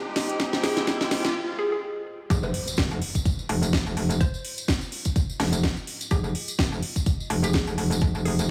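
Lightly reverberant, this swaggering, aggressive bass house clip in F minor at 126 BPM opens with a build-up: a punchy kick and a kit with a cracking snare and metallic hats, re-recorded in a small room, play under a filter-swept bright horn section's distant stabs, a brief warbly tape-like pad, an electronic riser and a very quiet, moody analog pad on a sustained Fm7. After a short break, the drop at 2.3 seconds lands with a background impact and brings in a saturated, chorused metallic wobble bass with sidechain pumping, plus a jingly acoustic tambourine. Throughout, a hollow, bouncy square-wave pluck carries a narrow, mellow melody with tape echo over a gentle swing.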